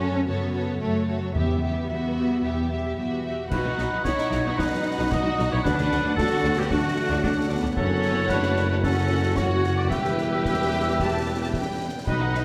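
Heroic adventure film score in E dorian at 112 BPM, determined and swashbuckling, where lush, distant violins carry the melody over a second violin line, violas, a mellow ringing harp's arpeggios, focused cellos and double basses, a brief soft-mallet timpani entry at 1.4 s, and then from 3.5 s a roomy oboe line, very quiet French horn chords, dark trumpet stabs, a smooth-topped tuba and concert drums with bright cymbals join, all bathed in a wet scoring-stage reverb through chords moving from F#m and Em to B and D.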